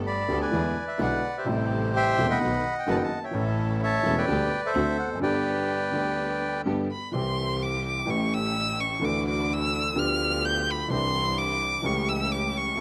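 Tango at 128 BPM in 4/4 with a rubato feel in G major, this short cut from a longer piece sounds elegant and playful. A reedy, dark bandoneon carries the melody up front until 6.6 seconds, over a boxy concert grand piano with deep bass and long sustain in the accompaniment. A bowed double bass with an earthy, nasal bite anchors the low end, while a focused studio string section adds stabs in the background, touched by a slapback echo. From 6.9 seconds a single violin takes over with a soft attack, vibrato and expressive portamento, leading as a solo through the second half as the harmony moves from C through A7 and Dadd9 to A7/C#. The sound is dry and close, recorded outdoors with little reverb, and carries some lossy compression artefacts.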